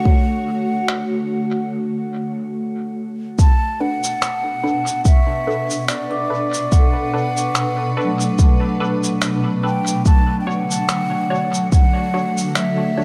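A breathy, hollow flute melody opens this spacious, hazy ambient dub excerpt, together with a blurred, evolving granular pad and a ringing, metallic vibraphone playing arpeggios with a fast motor vibrato. A deep, tape-warm electronic kick sits up front from almost the very start. The piece moves at 72 BPM in 4/4 with a lightly swung sixteenth feel in B minor, resting on Dmaj7, shifting to Bm7 at 3.4 seconds and returning to Dmaj7 near the end. Muffled, overdriven finger snaps and cabasa, pitched down and compressed, join within the first second, and a break passes before the second section begins. From 3.8 seconds a muted, detuned chord stab with a filter pluck adds short phased, chorused hits. Dub echo trails the flute, vibraphone, snaps and stabs, the pad carries its own reverb, and a moderate concert hall reverb gives the mix a roomy depth.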